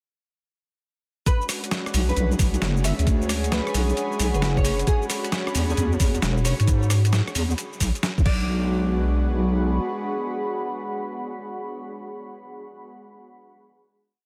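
Skippy and bouncy, this short two-step UK garage piece at 133 BPM swings its 16ths in B dorian, with a gritty, pitched-down sampler-style kit of cabasa, rim clicks, skipping hats, snare and crash riding over an up-front, thumpy electronic kick from 1.3 s through 8.4 s. A deep, saturated wobble bass with chorus plays a syncopated line beneath a breathy pad and a moody, sub-octave ambient pad, both pumping with sidechain, while a fingerpicked nylon-string guitar with finger squeak repeats a riff in the background through chorus and delay over chords moving from Bm69 to E13 and back. The dreamy mix is soaked in huge reverb, and after the drop the pads and guitar hold a final chord until the ambient pad ends at 12.1 s.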